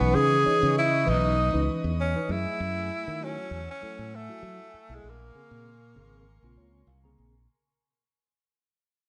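A lightly swung 4/4 groove at 98 BPM carries this slick, funky jazz fragment, cut from a longer piece and fading out across its 7.5 seconds as the harmony moves through Dbm9, Gbm9 and Bbm9. Up front, a bright tenor saxophone sings the solo melody with vibrato and a soft attack until 6.9 s, while a punchy, growly fingered electric bass drives underneath. A mellow, clean tine electric piano comps and adds a fill from 6.3 s, and an airy, breathy pad with chorus hangs softly in the background, all set in a large studio reverb.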